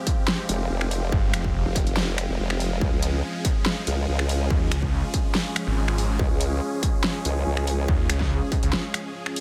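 Set in a digital ambience, this heavy, aggressive half-time wobble dubstep cut at 142 BPM in 4/4 pushes a distorted electronic kick and a tape-warm kit of finger snaps, bright hi-hats and a huge snare up front. Beneath them, a chorused, overdriven formant-sweep wobble bass enters at 0.5 seconds, and a snarling, detuned saw bass growls in briefly at 1.1 seconds and returns from 4.5 seconds. Lush, bright supersaw chords treated with phaser and sidechain pumping move from Fmadd9 to Db at 2.8 seconds, over a deep, moody pad with slow attack, chorus and built-in reverb in the background, until a short break closes the passage.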